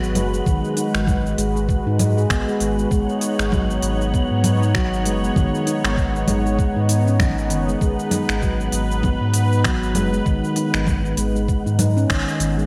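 A bright, 1980s-style digital sheen and a lush hall reverb frame this mystical, earthy organic downtempo excerpt in G# minor, moving at 98 BPM in 4/4 with a 16th-note swing, resting on a G#m7 chord throughout. A ringing stainless-steel handpan plays meditative arpeggios through digital delay over a detuned sawtooth analog pad with chorus, tremolo and sidechain pumping, while a round sine sub bass, also pumping, sits deep underneath and a breathy, wind-like tuned noise texture hovers in the background. Crisp hi-hats, congas, finger snaps and shaker from a gated-reverb electronic kit are joined by a gritty, thumpy, tape-warm kick that enters at 0.5 seconds and stops at 12.2 seconds, with a band accent at 12.1 seconds.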